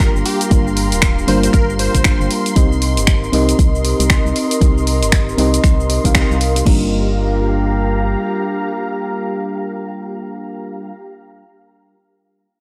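Hypnotic, late-night deep house at 117 BPM in G minor, cut from a longer piece, where a round FM electric piano with chorus and analog delay sits up front over an organ-like FM bass, a deep layered kick with studio reverb and an overdriven analog drum machine of cabasa, crash, finger snaps and hi-hat (both drum parts stopping at 6.8 seconds), while a catchy detuned unison lead with tape echo sounds only in the opening 2.3 seconds, and a silky string machine, breathy pad and woody violin section stay in the background, with sidechain pumping on the piano, bass, strings, pad and violins, over chords moving from Gm7 to Cm7 and back to Gm7 in a dry, gritty hardware recording.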